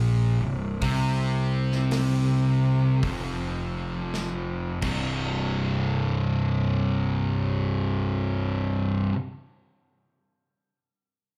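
Stoner and doom metal at a brooding, heavy 54 BPM with a swung feel, this live club snippet sets a dark, distorted, double-tracked fuzz guitar riff up front over a growly, overdriven fingered electric bass, while a big acoustic drum kit of bright crash and hi-hat, medium-tuned snare and punchy kick enters at 0.8 s, plays a fill from 4.1 s and stops at 5.0 s, shortly after the riff lands on a C5 chord at 4.7 s and just before it moves into a new section at 5.3 s, all heard through the venue's PA with a touch of club reverb.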